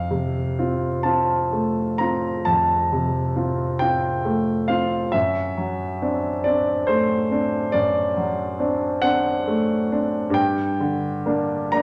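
A wet recital-hall reverb, decaying over about 1.4 seconds, surrounds a solo grand piano whose tone is warm, smooth and vintage, placed up front in the sound. This is a romantic classical nocturne in F major, serene and tender in mood, moving slowly at around 42-47 beats per minute in a rubato 12/8. The piano carries everything on its own, ranging from F2 up to Bb5 across the full 11.8 seconds of this short fragment of a longer piece. The harmony rests on F major at the start, shifts to D7 over F# at 5.1 seconds, and arrives on G minor at 10.4 seconds.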